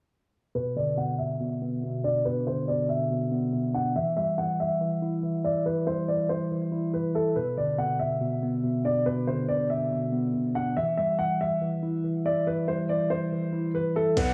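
A dark, boxy baby grand piano with audible action noise carries the melody from 0.6 seconds, softened by a low-pass filter and tape echo, over a clean, mellow tine electric piano moving between Bm and Em in this cold, tense half-time hip hop drill excerpt at 141 BPM in B phrygian. A filter sweep runs through the passage, and the recording has a worn, warbling cassette character with pitch drift, light reverb and small room ambience. Only at 14.2 seconds, just as the piece is cut, do a punchy, saturated 808-style bass, overdriven electronic hi-hats, a downlifter, a background woodwind section with light vibrato and a round, detuned synth lead with chorus and phaser arrive.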